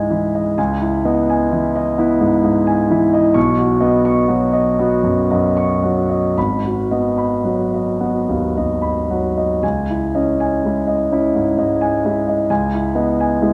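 Wistful and nocturnal, this impressionist solo piano passage in C# minor drifts in 6/8 at a slow 36-45 BPM counted in dotted quarters, with free rubato and a tuning of A4 = 437 Hz. A concert grand with deep bass, an open tone and long sustain sits up front, spanning G#1 to C#6 as it moves through C#madd9, Emaj7/C#, Badd9 and G#m7 before returning to C#madd9 at 9.6 s. A wet scoring-stage reverb with a 2.0 s decay surrounds the piano, and the 13.5-second fragment is cut from a longer piece.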